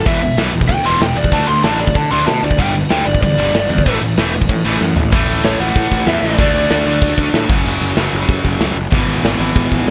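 A dry, close sound with a dark top end frames this rowdy, energetic punk rock cut from a longer piece, driving along at 189 BPM in a straight 4/4 in A major. A raw, overdriven garage guitar carries the melody high up, opening with a solo over the first 5.1 seconds before dropping out at 7.1 seconds. Beneath it, two bright, picked electric guitars hammer out the riff, one distorted and set back in the background, the other overdriven. A growly, fuzz-laden picked bass anchors the low end, while a big, up-front acoustic drum kit with a punchy kick, medium-tuned snare, bright cymbals and toms pushes everything forward. A drum fill leads into the second section, where the chords move from D5 through F#5 to E/G# as the band keeps charging.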